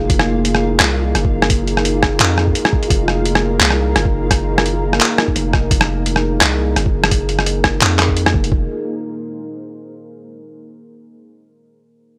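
Up front, a gritty, pitched-down sampler-style drum kit of handclaps, hi-hat and rim click pairs with a thumpy, compressed electronic kick in a small room, driving a dark, tense half-time drum and bass drop cut from a longer piece. Beneath them a long, mellow 808-style sine bass with tube saturation holds Fm, while a deep, moody detuned sawtooth pad with chorus, reverb and sidechain pumping sustains the chords and a flickering, grainy granular texture sits in the background. The drums, bass and texture fall away around 8.5 seconds, leaving the pad alone over a rootless Fm until 9.9 seconds, all within a dry, gritty hardware sound.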